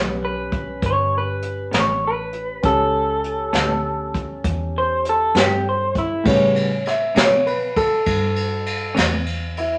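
A straight 12/8 pulse at 66 BPM carries this gritty, soulful slow blues fragment in A mixolydian, opening on an A9 chord as a slightly broken-up, lo-fi electric guitar through a small old amp sings the up-front melody, a clean picked electric guitar with tremolo sits in the background, a clear, worn baby grand piano with long sustain comps, a dark, foam-muted vintage fingered bass holds a round, punchy low end, and a jazz kit joining at 0.5 s and played with brushes adds dark cymbals, a high-tuned snare and a boomy kick in a wet studio reverb, until the melody guitar drops out and the piano takes a solo at 6.3 s.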